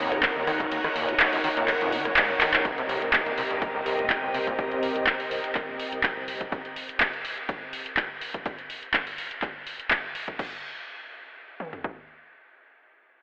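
A raw, hypnotic acid house passage, cut from a longer piece, opens on a drop with lush vintage string-machine chords, thickened by ensemble chorus, alongside a squelchy, gritty acid bass riff that is resonant, distorted and tape-echoed. Underneath, a round, deep analog bass sits in the background. Punchy analog drum machines carry the groove with a tape-warm kick, toms, handclaps, hi-hat, rim clicks, ride and crash, with a fill just before the harmony moves from Ebm7 to Cm7. Sidechain pumping makes the strings, both basses and the pad breathe against the kick, and a warbling, nostalgic lo-fi pad drifts in around 4.3 seconds. The chords fall away at 6.5 seconds, leaving the drums alone until 12.0 seconds. The whole mix is soaked in a huge, dreamy reverb and filtered to a narrow telephone-like tone.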